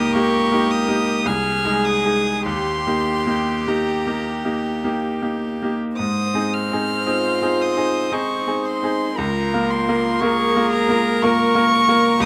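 Classical music for piano quartet, this slow romantic movement in 3/4 moves with a lyrical, warm rubato at around 48-62 BPM in Ab major, cut from a longer piece. Up front, a dark violin carries the melody high in its range, played sul tasto with an airy bow, soft attack and light vibrato that give it an intimate, close voice. A second violin with a rich, pure tone and a clear, nasal cello set further back supply gently floating second lines, both bowed sul tasto with soft attacks. The bright grand piano sits prominently beneath them as accompaniment, its brilliant, present sound ringing with long sustain and audible action noise. Close, detailed microphones and light reverb keep the 12.3-second passage intimate as the harmony moves from Eb7/Db through Ab/C and Eb to Ab, arriving on Bbm/Db at 9.2 seconds.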